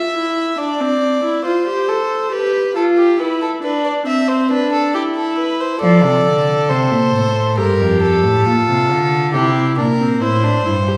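A rich cello with light vibrato stands out in this short cut from a longer baroque-style fugue for string quartet, entering at 5.8 seconds to anchor the bass. Before it arrives, a violin with an airy, nasal bow carries the second line. A viola with a smooth top plays accompaniment beneath it, both in gut-string period style. The mood is joyful and lively, with a straight 4/4 pulse and harmony that moves through Dm7, G7 and C, then on to F, Gm7 and C7. Each part is played by a single bowed instrument, and the reedy character of all three strings gives the ensemble an old-world colour. A wet recital hall reverb places the group further back in the room, lending the whole a spacious glow.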